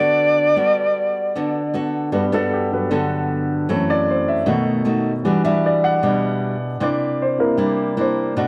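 A straight 4/4 bossa nova groove carries this breezy, sophisticated excerpt: an airy, reedy concert flute with vibrato sings a brief tongued phrase until 1.8 seconds over a full-bodied, fingerpicked nylon-string guitar, then a natural-sounding grand piano takes a solo from 2.1 seconds through chords such as Gmaj9, B7 and Em9, heard in a small room with a moderate echo-chamber reverb.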